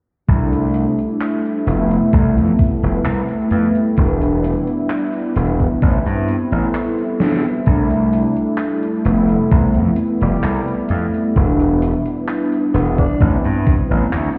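Vaporwave with a melancholic, hazy mood, cut from a longer piece: round, detuned synth brass and a punchy, overdriven slap bass sit up front over a thumpy, sampler-style kick and a gated 80s kit of snare, hi-hat and handclaps, while a very quiet, warbling tape-like pad drifts through from 1.2 to 7.7 s, a drum fill arrives at 7.2 s, and a raspy, growling tenor saxophone with tape echo surfaces in the background at 10.2 s, the mix sounding muffled as if through a wall inside a lush hall reverb.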